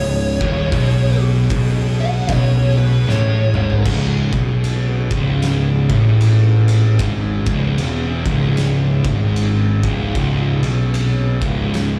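A brooding, hypnotic stoner and doom metal excerpt opens mid-flow on a dark, compressed fuzz lead guitar solo over a heavy swung groove, its tone coated in distortion and slapback echo. Beneath it, two thick fuzz guitars grind out the low riff in the background, a very quiet, bright, double-tracked overdriven guitar plays the riff too, and a growly fuzz bass sits up front. A very quiet tonewheel organ holds smooth sustained chords through a slow rotary speaker. The oversized, low-tuned drum kit enters at 0.4 seconds with a fat snare, punchy kick and dark cymbals in a pumping big room, and a drum fill runs from 3.1 seconds. The lead and the overdriven guitar stop at 3.8 seconds, leaving the fuzz riff, bass, organ and drums to churn on, heard like a live club gig through the venue's PA with light reverb.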